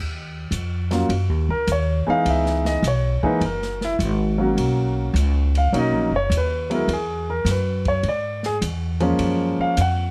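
Jazz piano trio with a swinging, smoky mood, cut from a longer piece, in which the intimate concert grand carries a solo throughout, its long sustain, deep bass and audible action noise sitting up front in a plate reverb. The woody, dark pizzicato upright bass starts at 0.0 seconds, also up front, while the acoustic drum kit enters at 0.5 seconds, set lower in an airy small room with a polished sound, dark cymbals and a boomy kick. The piano joins at 0.9 seconds over lush extended chords such as Dbm9 and Bmaj7, all within a light reverb.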